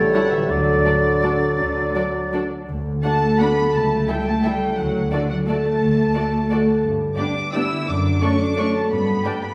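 This sweeping, festive orchestral ballroom waltz, cut from a longer piece, opens with con sordino violins carrying the melody over ringing, fingerpicked harp arpeggios. An airy silver flute, a very quiet clarinet, a distant cor anglais, a punchy bassoon and a mellow French horn section add brief lines and held chords that fall away by 2.5 seconds, while a second, background violin line and veiled violas join almost at once, with dark-toned cellos and double basses supplying the bass from 0.5 seconds. The lush muted strings move with a rubato lilt, bathed in the wet reverb of a recital hall or church.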